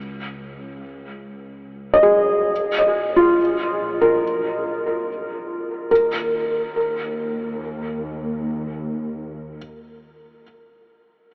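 A felt-muted upright piano, soft and intimate with audible action noise and short sustain, plays tape-echoed arpeggios up front over a dark, woody bowed double bass section that sits distant beneath it until 9.6 s, all bathed in a huge reverb with a lo-fi AM radio tint, giving this reflective, serene ambient fragment in three a hushed, cavernous calm.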